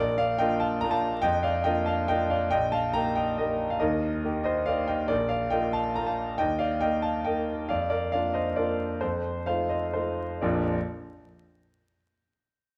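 A clear concert grand piano plays alone from 0.0 to 10.8 s in this graceful, elegant classical waltz, a short cut from a longer piece. The piano sits up front with an intimate, polished presence, its deep bass and long sustain spanning a range from Bb1 up to Bb5, and the sounds of its action are audible close by. The triple-metre lilt is shaped with rubato, and the harmony moves through a refined cadential line that settles back home on the tonic at 10.4 s, just as a new section begins. The piano is bathed in the wet reverb of a recital hall, while a vinyl crackle lends the recording an aged patina. The instrument is tuned a touch below modern concert pitch, to A4 = 436 Hz.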